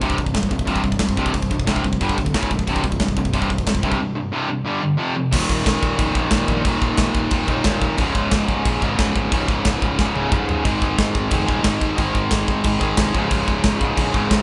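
Recorded as a band playing live in one room, with light reverb and a rolled-off top end, this heavy, relentless metal excerpt pushes forward on a driving straight beat. Two picked electric guitars, one distorted and compressed up front and the other overdriven, churn through a low power-chord riff over a growly fuzz bass sitting in the background. A polished, tight metal drum kit with crash cymbals, kick, snare and toms sits up front, and the music moves into a new section at 5.3 seconds before a drum fill at 10.0 seconds.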